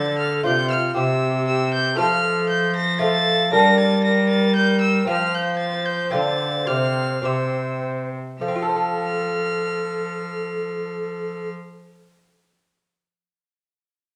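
A bowed violin with a gut-string tone leads this festive, stately renaissance-style consort dance, its one player up front with light vibrato and a reedy, period-style sound carrying the melody high in its range. Beneath it an alto recorder plays a second line with an airy, wooden voice, tongued notes with a touch of chiff and an expressive vibrato. A fingerpicked lute with double gut strings, some octave-doubled, supplies bright, delicate accompaniment, and a bowed cello, also up front with a rich gut-string tone, holds the bass. In 3/4 and F major at 100-117 BPM with a straight feel, the dance moves through chords such as Csus4, C, F and Gm, slowing down between 4.3 and 8.4 seconds before a second section begins on F at 8.4 seconds. A wet stone room reverb surrounds the ensemble in this short excerpt cut from a longer piece, with the lute ringing on to 11.8 seconds after the other parts stop.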